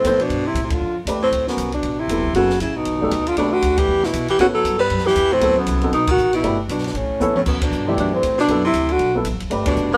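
Small-group swing and bop jazz with a sophisticated, warm mood, taken from a longer piece and played by a band live in one stone room with moderate reverb. A breathy tenor saxophone carries the melody up front, its dark, whispered subtone tone marked by vibrato, soft attacks and scooped notes. Beneath it an edgy, close-miked baritone saxophone plays a punchy, forceful second line. A baby grand piano with a natural sound supplies the accompaniment over a woody, thumpy pizzicato upright bass with steel strings, while a compact cocktail drum kit with dark cymbals, a high-tuned snare and a tight kick keeps swing time until 9.8 seconds. The harmony moves through rich chords such as G13, D13 and B7alt, with band accents throughout, a drum fill at 7.2 seconds and a fresh pass through the form beginning at 7.5 seconds.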